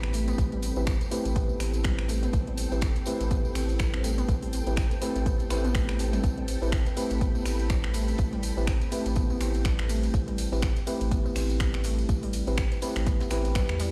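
Deep house with a warm, late-night mood, this short cut from a longer piece sits on a single Am9 chord with a swung groove. An overdriven electronic kick with a deep, room-recorded thump anchors the beat from 0.4 seconds, joined by an overdriven electronic kit of finger snaps, metallic hi-hats and ride, a faint cloth-damped acoustic kit with a fat, rolled-off snare, and a jingly tambourine in the background. A rubbery, nasal square bass sits up front with tube saturation and a bouncy, resonant character. Above it, a mellow FM electric piano plays round, decaying stabs, while a warbling, lo-fi pluck runs detuned arpeggios through chorus and tape echo. A silky vintage string machine holds sustained chords in the background with an ensemble chorus, and the bass, keys, pluck and strings all breathe with sidechain pumping, all heard through a stone room reverb on a big sound system.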